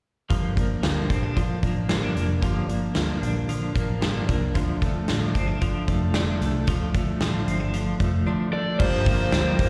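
Heard as a live gig through the venue's PA, this short cut from a longer piece carries light reverb and the roomy tail of a recital hall. It is jangly indie pop in a straight 4/4 feel, with a bittersweet, restless mood as the harmony moves from Gm7 to Dm and back. A bright, twangy twelve-string electric guitar plays clean arpeggios colored by tremolo and slapback echo, while a full-bodied jumbo steel-string acoustic guitar is fingerpicked underneath, also with slapback echo. A dark, foam-muted vintage electric bass sits low and round, and a big rock drum kit stands up front with a punchy kick, a medium-tuned snare, hi-hat and bright crash cymbals ringing through a big, natural room. Near the end, at 8.5 seconds, a lead guitar through a small cranked amp enters up front with a short overdriven melody and slapback echo, and from 8.8 seconds a smooth, detuned sawtooth pad with chorus adds soft-attack sustained chords in the background.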